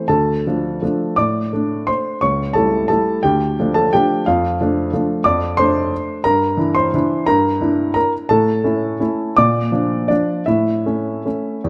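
Wistful and nostalgic, this classical piano waltz in 3/4 moves with a rubato feel at a tempo that drifts between 150 and 188 BPM, settling into D minor from 4.3 s. A solo upright piano carries the whole passage from 0.0 to 11.7 s, ranging from C#2 up to D6, with a woody, intimate tone, short sustain and audible action noise that keeps it sounding natural and up front. The harmony circles around D minor, passing through A7 over C#, an E half-diminished chord over G, and a turn to B-flat before resolving back toward A at 10.5 s. Close, detailed microphones capture the instrument's mechanics, while a moderate recital hall reverb with a 1.7 s decay gives the sound a gentle sense of space. This brief passage is cut from a longer piece, leaving the phrase hanging on that final A chord.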